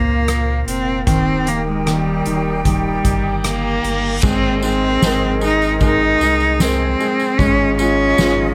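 Tender and heartfelt, this pop ballad excerpt in Ab major moves at 76 BPM in a straight 4/4, with a clear, boxy bowed cello singing the melody up front over a natural-sounding baby grand piano, airy flute-ensemble chords and a woody, thumb-plucked nylon-string guitar in the background, a round sine sub bass, and a soft-mallet drum kit with a fat snare and boomy kick, while an electronic reverse cymbal at 3.5 seconds leads into a jingly, saturated tambourine from 4.2 seconds, all in light reverb.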